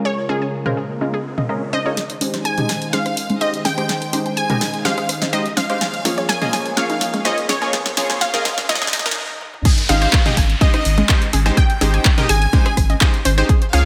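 Progressive house at 125 BPM in Ab major, euphoric and hopeful, opens on a detuned sawtooth unison pluck melody with gritty 12-bit sampler character, a lush warbling pad, bright supersaw stabs, a crystalline wavetable pluck arpeggio and analog-toned electronic congas and toms in the background, all breathing with sidechain pumping under a lush hall reverb. From 2.0 seconds a punchy house drum kit with handclaps, rim clicks and crash cymbal drives a filter-swept build-up, joined by a smooth, close-miked studio violin section with vibrato, before a brief stop gives way at 9.7 seconds to the drop. There a punchy, up-front electronic kick and a deep, saturated sine sub bass land on an Abmaj7 chord.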